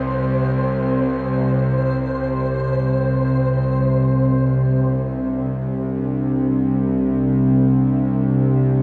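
Desolate and cavernous, this dark ambient drone drifts in free time, a short passage cut from a longer piece and steeped in a wet cathedral reverb. A tense, string-like bowed drone sits up front from C2 to C3 with vibrato, while a flickering, grainy texture hovers around C5 only until 3.8 seconds, and the harmony settles on Csus2 at 3.7 seconds. At 6.2 seconds a very quiet, deep and mellow pad enters between D4 and C5, its detuned, wave-folded, ring-modulated tone softened by chorus.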